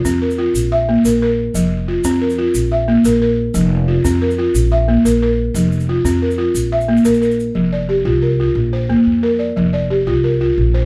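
In a 12/8 at 120 beats per minute, counted in dotted quarters, this flowing, joyful piece of West African xylophone and string music moves with a straight, even pulse. Up front, the balafon plays arpeggios from F3 to E5, its dark, buzzing tone struck with soft rubber mallets and sounding dry and smooth. Beside it, the pizzicato upright bass holds the low end between F1 and F2, its steel strings giving a thumpy, woody weight. A grainy, bright tube shaker with a vintage, band-limited edge sits far back in the mix and stops at 7.4 seconds. The harmony alternates between an F power chord and open, chordless stretches, then shifts at 7.6 seconds to a passage that moves from F to B-flat and back. The trio plays live together in one large studio, wrapped in a generous reverb, in this short cut from a longer piece.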